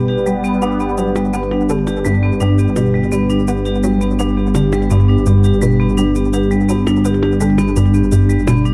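Hypnotic and cosmic, this short excerpt of sequencer-driven ambient space music moves at 84 BPM over a G chord, with a punchy, wave-folded analog bass riff carrying ensemble chorus and delay, a fat, saturated low bass on G1, a bright, detuned resonant pad sustaining chords through chorus, metallic vibraphone arpeggios with slow motor vibrato and delay entering at 0.1 seconds, and electronic shaker and percussion blips joining at 0.3 seconds, all set in a dark production with light reverb.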